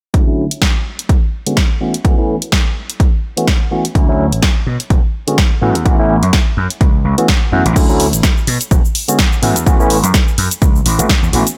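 A filtered, sidechain-pumped sheen sits over this feel-good, joyful excerpt of disco house, cut from a longer piece and set in a digital ambience, moving at 126 BPM in 4/4 with a light swing on the sixteenths in A major. A barky, bright tine electric piano carries the chords up front from the start, colored by phaser, vintage 12-bit sampler grit and a low-pass filter, cycling through Dmaj7, E13 and A6 shapes. An electronic kick drum with an analog punch anchors the groove, joined by an analog drum machine supplying snare, hi-hat, shaker and crash cymbal, its hats, cymbals and percussion pumping against the sidechain, both re-recorded in a small room. At 4.0 seconds an overdriven, gritty slap bass enters directly amped and up front, low-pass filtered and pumping as well. A filter sweep runs through the opening passage until 7.8 seconds, where a second section begins and the chord cycle repeats.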